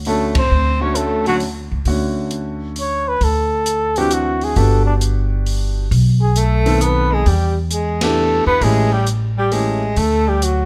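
Swinging and relaxed, this small-group jazz waltz in D major moves at 133 BPM in 3/4 with a lilting swing, taken from a longer piece. Up front, a mellow, breathy flugelhorn carries the melody with light vibrato, while a woody, thumpy pizzicato upright bass on gut strings anchors the low end. A whispered, intimate tenor saxophone adds a second line with scooped notes and a soft attack, sounding briefly at the start, dropping out at 1.4 seconds and returning at 6.4 seconds. Beneath them, a concert grand piano comps with audible action noise and deep bass until 9.8 seconds, and a dark, smooth drum kit with a boomy kick and rolled-off top keeps time on hi-hat, ride, snare and kick, with the band hitting two shared accents along the way. The harmony moves from Dmaj7 through Gmaj7, B7b9, Em7 and A7 before settling on D, all in a small acoustic space with light reverb.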